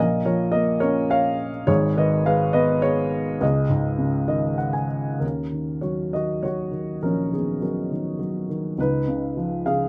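Closely miked with light reverb, a dark, woody upright piano sits up front in this brief, detailed classical cut from a longer piece, spanning G#1 to G#5. The mood is cool and bittersweet, moving at 103 BPM in 3/4 with a lyrical rubato feel as chords shift from A#m through G#m to C#sus2. A piano fill at 4.0 s leads into a new passage at 5.2 s that settles in Eb minor on Ebm7 before reaching Db9.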